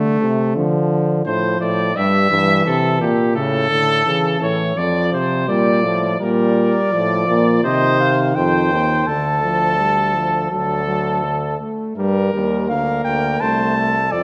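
A recital-hall reverb gives this brass ensemble a wet, resonant glow, with the euphonium, trumpet and cornet set up front. It is a serious, contemplative classical canzona in an imitative style, moving at a steady 84 BPM in straight 4/4, opening in D minor and shifting to G minor at 6.2 s. The euphonium anchors the bass with a warm, soft-attacked tone, while the clear trombone supplies accompaniment in the middle register from the start. A trumpet with light vibrato enters at 1.3 s as a second line, and the cornet takes the melody from 6.2 s with a punchy sound and a smooth top in its high register. The harmony moves through chords such as Dm, Bb, Cm and a Dsus4 resolving to D before arriving on Gm, and the passage is cut from a longer piece.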